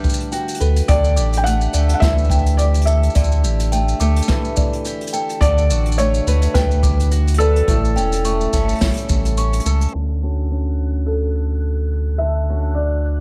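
Set in muffled studio ambience, this delicate, warm folktronica excerpt in D major moves at 106 BPM with a light swing: a felt-muted upright piano with audible action noise carries the melody through 12-bit sampler grit and digital delay; a tinkling music box adds a second line; a woody, boxy, old-stringed ladder-braced acoustic guitar picks gritty, low-passed arpeggios and takes a filter sweep from 9.9 s; a distant brushed kit of hi-hat, shaker and snare plays alongside a boomy kick that drops out at 9.2 s; a round sine sub bass sits up front; and a faint reversed, granular, dreamy texture glows in the background from 10.9 s.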